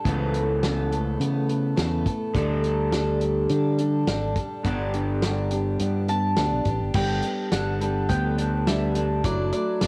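A straight, steady 4/4 groove drives this short cut from a longer folk rock and heartland rock piece, with an open-road, jangly mood. A natural country drum kit sits up front with a punchy kick, fat snare, hi-hat and dark crash cymbal, while a fingered electric bass adds a round, warm low end just as prominently. A full-bodied, picked dreadnought acoustic guitar carries the accompaniment, and an electric guitar through a small old amp plays a slightly broken-up, lo-fi riff, both with a cassette tape character. At 6.1 seconds a mellow, woody mandolin enters with the melody, its double strings coloured by cassette tape and analog delay. The chords move from Aadd9/C# through Dsus4 and Gadd9 to Dadd9/F#, and the home cassette recording carries light reverb and small room ambience.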